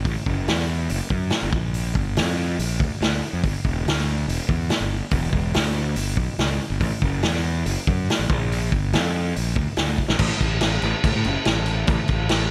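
A straight 4/4 pulse at 142 BPM drives this upbeat, carefree indie rock excerpt, cut from a longer piece. A vintage acoustic drum kit sits up front with a punchy kick, a medium-tuned snare, hi-hat, crash cymbal and dark cymbals, its rolled-off top giving the kit a warm, mid-forward character in a studio room. Alongside it, a fingered electric bass plays from E1 to A2, overdriven into a growly fuzz tone that also sits up front. A drum fill arrives at 10.0 seconds and leads into a new section at 10.2 seconds, which carries the pair to the end. Light reverb rounds out the mix.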